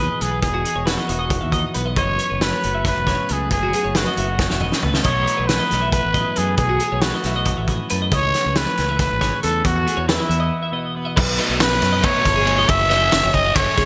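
A growling, raspy trumpet opens this brief, wistful and bright excerpt of math rock and midwest emo, carrying the melody up front with a light vibrato over two clean, twangy twelve-string electric guitars, one picking chords beneath it and the other spinning compressed arpeggios through analog chorus in the background. An overdriven fingered bass adds a growling low end, and a loose indie drum kit joins almost at once, its fat snare, punchy kick and dark cymbals sounding saturated and gritty with a rolled-off top. The music moves at 274 BPM counted in eighths, in a straight 7/8 in E major, passing from Emaj9 through B7sus4 and Amaj7/C# to Emaj7sus2, with a drum fill and, later, a short break. At 11.2 seconds the harmony turns to B9 and then F#m7 as a double-tracked, scooped overdriven electric guitar slips in behind with a brief riff. A lush hall reverb and a bright, 1980s-style digital production frame the whole band.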